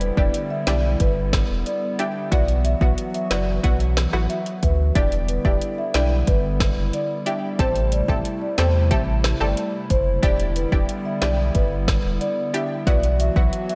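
This bouncy, sultry dancehall cut at 91 BPM in E minor has a dreamy sound, soaked in a lush hall reverb, and it is taken from a longer piece. A soft-mallet marimba carries the melody from the start, its woody rosewood tone close-miked and trailed by tape echo. Beneath it, a hollow, flute-like pad holds sustained chords with chorus and sidechain pumping, while a round sine sub bass anchors the low end. The electronic drum kit sits up front with a deep kick, woody snare, rim click and metallic hats, roughened by vintage 12-bit sampler grit. A detuned, punchy chord stab with a bright filter pluck joins at 0.2 seconds, moving through Em7, Bsus4 and Am7 changes.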